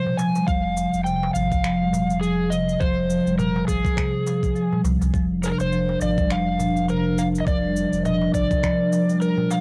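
Organic downtempo in F dorian at 103 BPM with a 16th-note swing, this mystical, hypnotic excerpt from a home cassette recording sets an up-front overdriven slide guitar melody with sampler grit and tape echo over woody soft-mallet marimba arpeggios under plate reverb, a crisp metal-shell darbuka in the background, layered electronic shaker and finger snaps, a knocking electronic kick and a round sine sub bass pumping with the sidechain, as a warbling, detuned, dark pad enters at 5.5 s, just after the move from Fm to Bb/F.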